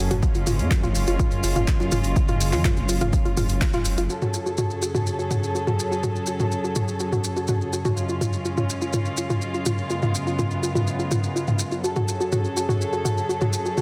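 Melodic techno with a dramatic, cinematic mood, built on a bowed chamber string section holding intimate, sul tasto chords, a warm drone evolving in the background with chorus and phaser, and a warbling, lo-fi pluck spinning dusty arpeggios through tape echo, with a filter sweep on the arpeggios over the opening 4.1 seconds. A menacing, detuned saw bass and a dry, overdriven electronic kick sit up front at the start, the kick dropping out at 3.7 seconds and the bass at 4.1 seconds, while a punchy analog drum machine of handclaps, hi-hats and toms and grainy, mellow maracas carry on to the end. Sidechain pumping breathes through the strings, drone, pluck and drum machine, and the chords shift between F#m and C#7/F# in a dense, heavily limited mix.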